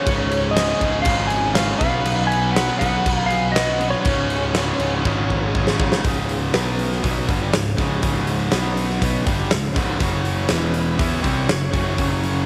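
A clean, compressed lap steel played with slide and fingerpicks carries the melody of this swaggering, driving classic rock excerpt, shadowed by a dark, very quiet octave-fuzz lead guitar until both stop at 5.5 seconds, while a shouting tonewheel organ with key click and slow rotary speaker holds very quiet chords, two overdriven electric guitars pick a riff in the background, a growly fuzz bass punches underneath, and an up-front arena drum kit with fat snare, punchy kick and bright cymbals plays a fill from 5.0 seconds into the second section, where the organ returns at 9.7 seconds.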